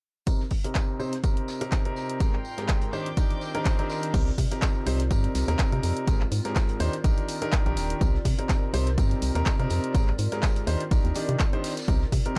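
A clear, intimate grand piano plays a riff from 0.3 seconds in this energetic, bittersweet piano house excerpt, passing through a sweeping low-pass filter with dub echo and sidechain pumping, its action noise audible over a Cm7, Abmaj9 and Ebmaj7 progression in C minor. Underneath, from the same moment, at 124 BPM in 4/4 with a 55% swing on the 16ths, an up-front, tape-warm electronic kick drives a punchy analog drum machine of crash, handclaps and hi-hat. Meanwhile, a cloth-damped, thuddy acoustic kit with a fat snare and tambourine sits in the background, its hats and percussion pumping and high-passed. At 2.2 seconds a rich chamber string section with a reedy gut-string tone and light vibrato adds pumping sustained chords. A moment later a warbling, nostalgic, lo-fi pad with chorus and built-in reverb fades in softly behind it. A brief electronic swell leads to 4.1 seconds, where the strings stop and a hollow, percussive, organ-like FM bass enters with a fast attack and sidechain pumping. 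The whole excerpt sits in a small room with a dark, warm production.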